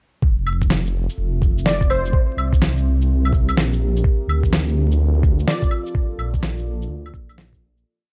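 A menacing, detuned saw bass with long gliding notes and a saturated filter swell anchors this melancholic, ghostly future garage piece at 126 BPM with a 16th-note swing. A muffled, thumpy two-step kick and a skittering, shuffled beat of shaker, claves and fat snare sit up front, while a deep, moody pad with chorus and reverb pumps slowly through Fmaj7, C7, Dm7 and Bbmaj7. A punchy, catchy unison lead with vibrato and analog delay drops in short phrases at 1.7 and 5.5 seconds, and the dry, gritty recording, dusted with vinyl crackle, fades out from 5.3 seconds.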